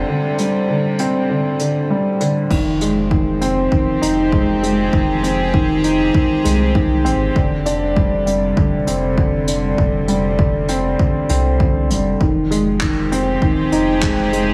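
A dark upright piano sits up front in this moving, cinematic piano and strings electronica excerpt, playing a woody, slightly detuned riff with audible action noise, softened by a low-pass filter and trailed by digital delay. Beneath it, a clear studio string section holds floating, bowed chords, while a round analog bass supplies deep, sine-like low notes, both carrying sidechain pumping. A vintage brush drum kit with dark cymbals, handclaps and hi-hat comes in at 0.4 s, its rolled-off top and small-room character keeping it soft in the mix. After an opening break, a punchy, overdriven electronic kick joins at 2.5 s, lending weight to the straight 4/4 groove. The harmony alternates between Csus2 and Fm7, and light reverb with small room ambience keeps the whole sound close and intimate.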